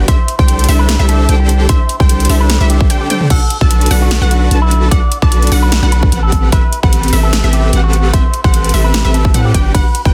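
Bright and playful, this short cut from a longer future bass track moves at 149 BPM in 4/4 with a half-time feel and a light 16th-note swing, tuned to A4 = 435 Hz. A deep, sine-toned 808-style bass and a layered electronic kick sit up front, while a big-room dance kit adds a punchy snare, metallic hats, crash, ride and toms, with studio reverb on both drum parts. A huge, detuned supersaw carries the riff, and a clean, dark electric guitar through an envelope filter and digital delay plays the melody, as a lush unison pluck arpeggiates in the background. The bass, supersaw, guitar and pluck pump against the sidechain over chords that move from C69 to Bm7, Am9 and finally Gmaj7. A brief break around 2.9 seconds is marked by a drum fill at 3.1 seconds, and the master is dense and heavily limited.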